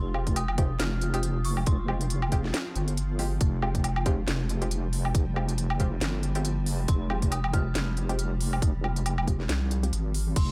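A deep, saturated wobble bass sits up front in this heavy, dark deep dubstep excerpt in F minor at 138 BPM, its swung half-time feel driven by a tight electronic kick from 0.3 seconds and a garage kit of cracking snare, crisp hi-hat, crash cymbal and woodblock, both drum parts tape-warm and carrying a large-room character. Behind them, muted, detuned dub chord stabs with chorus and dub echo sound over an Fmadd9 chord and a blurred granular cloud pad, while an eerie, inharmonic FM bell with chorus and echo rings in the background until 2.5 seconds and returns at 6.9 seconds. The mix is otherwise dry, with the pad's built-in reverb lending its own haze.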